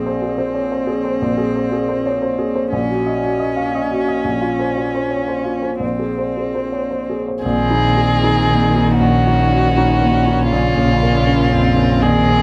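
Close, detailed microphones and almost dry acoustics frame this melancholic, reflective neoclassical excerpt in 3/4 at 118 BPM, played with a rubato feel over chords such as Abadd9/Bb, Ebm7/Bb and Bbmadd9. A worn baby grand piano with long sustain sits up front beside a cello second line, bowed with vibrato and expressive portamento. At 7.4 seconds a soft-attacked solo violin takes the melody with portamento, while a smooth, even viola murmurs in the background and a focused bowed double bass holds a low Bb1 until the cut at 12.4 seconds.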